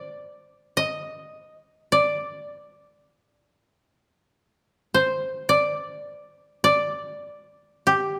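Austere and calm, this brief passage of Japanese traditional chamber music unfolds in free time, cut from a longer piece. A solo koto, plucked with fingerpicks, carries the whole 8.2 seconds on its own, its notes staying within a narrow span from G4 to Eb5. The instrument sits up front, with a dry, woody tone and a gently warm body. Around it, a moderate recital-hall reverb lends a sense of space. The unhurried, pulse-free phrasing gives the fragment a contemplative, restrained character.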